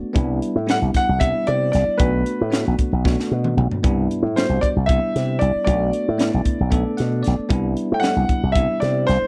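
Set in a straight-feeling 7/8, this soaring, funky electric jazz fusion passage, cut from a longer piece, alternates between Cmaj9 and Bm7 as a gritty, saturated acoustic drum kit with a high-tuned snare and tight kick pumps in a small room, while a punchy slap bass pushed through an envelope filter sits up front. A clear concert grand piano carries the melody from 0.7 seconds over a bell-like, clean tine electric piano accompaniment, with a drum fill at 3.0 seconds and an electric piano fill at 6.7 seconds. The sound is dry, with little reverb.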